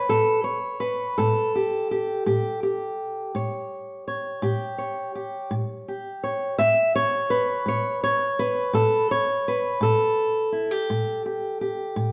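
A fingerpicked steel-string acoustic guitar opens the recording and carries it alone from 0.0 to 12.1 s, sitting up front in the mix. This is soulful, laid-back acoustic country blues with an unhurried 12/8 pulse and a straight feel. The guitar has a dark, woody character with the dull edge of old strings, and its auditorium body gives each note a full, rounded depth. It ranges from its low register up into its upper notes, resting on a single A7 chord throughout. A generous large-studio reverb surrounds the playing, giving it the open feel of a musician performing live in one room. This short excerpt is cut from a longer piece.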